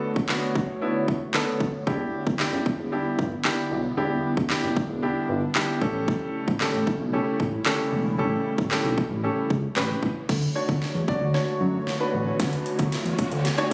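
An intimate grand piano sits up front with its action noise audible, pumping against the sidechain alongside a soft, breathy pad with chorus, as this euphoric, carefree dance-pop excerpt in D major moves at 114 BPM through Bm7, Em7 and A7. A punchy, layered electronic drum kit with a deep snare, metallic hats and handclaps drives the groove, and a fat, detuned analog bass with a moving notch joins at 1.9 seconds. From 10.3 seconds a drum fill opens a build-up on Dmaj7, with a background riser entering at 11.8 seconds under light digital ambience and a phone-in-the-room character.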